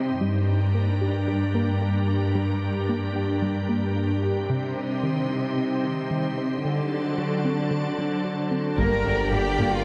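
In a straight 4/4 pulse, this brooding, vast hybrid orchestral and electronic cue opens with a soft, organ-like pad holding sustained chords up front, a tight sequenced synth running driving arpeggios through chorus and tape echo in the background, and a smooth, lush cello section carrying the bass line. At 8.8 seconds the full ensemble arrives: a focused violin section on a high second line, an intense viola section in accompaniment, mellow French horns on sustained chords, a deep, rumbling detuned saw bass alongside a distant double bass section, and heavy-stick taiko drums. The moderate scoring-stage reverb gives the whole cue a spacious, cinematic depth before this excerpt cuts off.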